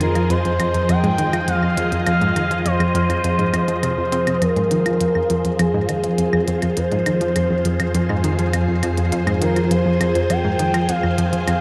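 Clicky electronic hi-hats and claves carry a straight 102 BPM pulse in 4/4 beneath a round, bright analog pluck riff, while a detuned, evolving analog drone holds F in the background of this cosmic, expansive stretch of sequencer-driven space music in F minor. A swirling, vintage string machine sustains phased chords on Fm, and a smooth, dark synth lead sings an expressive melody up front with vibrato and tape echo. A very quiet pulsing gated texture throbs until 4.4 seconds, and the whole mix sits in a huge, wet ambient reverb with a 7.4-second tail.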